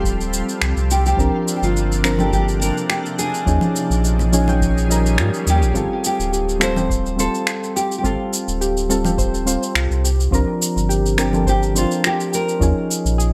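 A fingerpicked nylon-string guitar carries the melody from 0.9 seconds, its full-bodied classical tone roughened by vintage 12-bit sampler grit and trailed by delay. This relaxed, wistful sunset chillout piece moves at an easy, straight pulse. Soft, warbling electric-piano-like synth keys, dark and up front with chorus and delay, provide the accompaniment. A round sine sub bass sits deep beneath it, while a dry, tape-warm electronic kick joins an overdriven shaker, finger snaps and congas that sound re-recorded in a small room. A bright, shimmering granular pad holds ethereal sustained chords until 5.7 seconds. From 4.9 seconds a quiet electronic swell leads into a second section at 5.8 seconds, where a gentle wave-folded pluck adds arpeggios in the background through analog chorus and delay. The harmony circles through G9sus4, C9sus4 and Eb9sus4 inside a moderate plate reverb and a bright, 1980s-style digital production, in this fragment cut from a longer piece.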